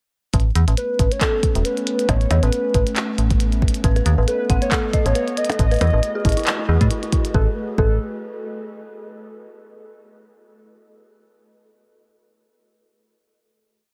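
A metallic, up-front FM bass drives this wistful, glitchy IDM piece at 137 BPM in A lydian with a 16th-note swing, playing a syncopated riff under a deep broken kick, a glitched kit of clicky hats, claps and percussion blips, a warbling tape-like pad on sustained chords, and a nostalgic lead with chorus, tremolo, vibrato and tape echo, before an eerie, inharmonic synth bell enters at 3.8 seconds with an 11-step arpeggio drifting against the bar, leading to a final chord from 7.3 seconds in a dry mix.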